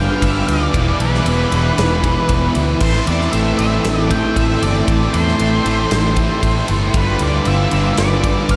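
An octave-fuzz lead guitar carries the melody through this hazy, dreamy shoegaze and dream pop excerpt, its distorted, picked tone trailing off into a diffuse ambient delay. Beneath it, a thick, dark fuzz guitar with ensemble chorus and an overdriven electric guitar with reverse reverb sit in the background playing riffs, joined by a very quiet, bright, double-tracked distorted guitar. A smooth analog pad built from detuned sawtooth and sine tones holds sustained, mellow chords with a slow attack, long release and chorus. A round, foam-muted fingered electric bass gives a dark, amped foundation, while a huge arena drum kit enters at 0.2 seconds with a punchy kick, a medium-tuned snare, and bright crash and ride cymbals ringing in a hall. The chords move from G7 through E5 and Am7 back to G7, and the whole dreamy mix is soaked in a vast ambient reverb.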